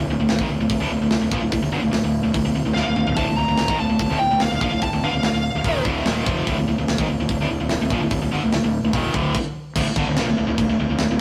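A bright, double-tracked distorted guitar drives this relentless heavy metal excerpt with a low picked riff in D phrygian at 146 BPM, backed by a growly, punchy fuzz bass and a tight acoustic drum kit with a medium-tuned snare and a rolled-off top. A smooth overdriven lead guitar adds a high picked melody with digital delay from 2.7 to 5.8 seconds, while the drums play a fill near its start, and the band hits a sudden stop at 9.4 seconds before a new section begins. The rough rehearsal-room recording sits in a moderate stone-room reverb, with the rhythm guitar and drums up front.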